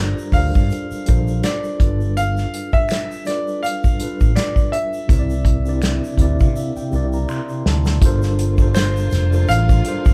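An up-front acoustic drum kit with a punchy kick, played with bundle sticks, drives this smooth, late-night neo-soul groove, cut from a longer piece, with a gentle swing and a drum fill from 6.6 seconds. A clear concert grand carries the melody over a mellow tine electric piano heard through its built-in speakers, which adds a fill from 5.8 seconds, while a dark, round fretless bass sits beneath and a distant tube shaker and finger snaps add texture. A warm, bowed string section with vibrato and portamento joins in the background at 8.0 seconds, and the band plays live in one dry room.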